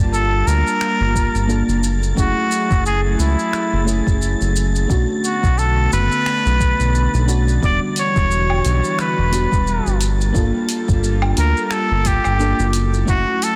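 Bathed in a lush hall reverb and a dense, heavily limited modern master, this relaxed, smooth sunset chillout excerpt at 88 BPM with a lightly swung feel sets a nasal, whispered straight-muted trumpet melody up front over a dark FM electric piano with chorus, phaser and delay, an airy pad on sustained chords, a round, deep analog bass with tube saturation, a wind-like tuned noise texture in the background, and a tape-tinged deep house kit of finger snaps, hi-hat, shaker and woodblock, joined by a soft electronic kick at 1.1 s as the chords drift from Gm9 through F#m9, Bm9 and Em9.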